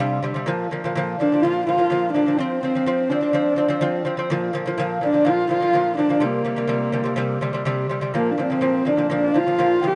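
From the first moment, a dark, husky horsehead fiddle carries the melody up front, alongside a delicate fingerpicked lute and a mellow low xiao, in this proud and vast passage of Mongolian traditional music, cut from a longer piece. It moves at a steady 125 BPM in a straight 4/4, set in a Bb gong mode and tuned to A4 = 439 Hz, with the harmony shifting from Bb5 to F5, back to Bb5, then to C5 before returning to Bb5 at 8.2 seconds, where a new section begins. The bowed fiddle, one player on horsehair strings, sings in a woody voice with vibrato and portamento. Close beside it, the gut-strung lute plays arpeggios on double strings, some of them octave-doubled. Further back, the end-blown bamboo xiao traces an airy second line above the fiddle, with a crisp attack and its own vibrato. A huge, moderate ambient reverb lingers around the ensemble, and the dark production rounds off the upper edge of the sound.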